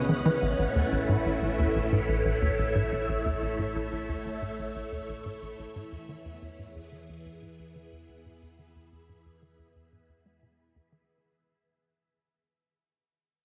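Bathed in a wet plate reverb, this expansive, mysterious cut from a longer piece of ambient, sequencer-driven space music moves at 90 BPM in a straight 4/4, tuned to A4 = 438 Hz, fading out from start to finish as its chords shift from A to E at 5.8 seconds. A tight, punchy sequencer bass drives the riff with a sawtooth and square-wave filter pluck dressed in lush chorus and delay, while a filter sweep runs across the synth bass throughout. Up front, a bright, swirling vintage string machine holds warbling sustained chords through ensemble chorus, phaser and shimmer reverb, and a deep, round sine sub bass sits in the background beneath it.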